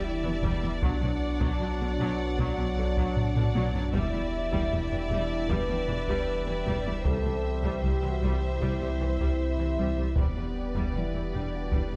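Cinematic hybrid orchestral and electronic film score, futuristic and tense, cut from a longer piece: a smooth, vibrato-laden violin section carries the melody over a second, focused violin line, while a close viola section, a very quiet cello section and a studio double bass section fill out the lush, bowed strings. Mellow French horns and background trombones hold soft-attack chords beside a detuned sawtooth analog pad with chorus, and a punchy sine sub bass with a pitch-drop attack anchors the low end. A taiko ensemble struck with hard sticks in a live room adds weight from the background, with a drum fill at 3.2 seconds, and the mix sits in light reverb.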